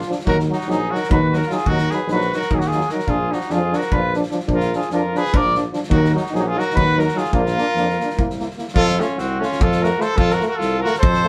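A mellow, distant cornet leads this short, bittersweet Balkan brass excerpt in 7/8 at 296 BPM (eighths), carrying a virtuosic melody in Bb phrygian dominant over a bright trumpet second line with a smooth top. Clear euphonium and close-miked trombone sit in the background as accompaniment, a present tuba anchors the bass from 0.3 s, and a loose, roomy drum kit adds a fat snare and punchy kick with a rolled-off top. Played live in one room with moderate studio reverb, the band moves from Ebm and Bb through C7 to F at 8.8 s.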